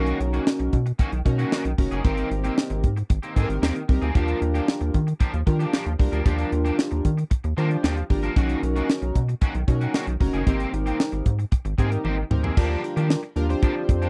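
A dry, close recording with little reverb gives this short clip of early-eighties boogie funk the feel of a 1970s-style studio, keeping the drums, bass and synth up front and immediate. At 114 BPM in a straight 4/4 and set in Eb major, the mood is feel-good and danceable, riding a chord cycle that moves from Bmaj9 to Abmaj9 to Ebmaj9. A tight, polished acoustic drum kit with a high-tuned snare, a tight kick, hi-hat, crash and toms drives the groove, capped by a drum fill from 12.0 to 12.6 seconds that leads into a new section. Beneath it, a rubbery, hollow square-wave bass with a filter pluck bounces through a dark low register. A glossy, full-bodied chorused polysynth built from pulse and sawtooth waves, with pulse-width modulation, a sub octave and a filter sweep, supplies mellow sustained chords. Alongside it, a bright, twangy picked electric guitar at the edge of break-up plays a riff through an ensemble chorus, and the clip is cut from a longer piece.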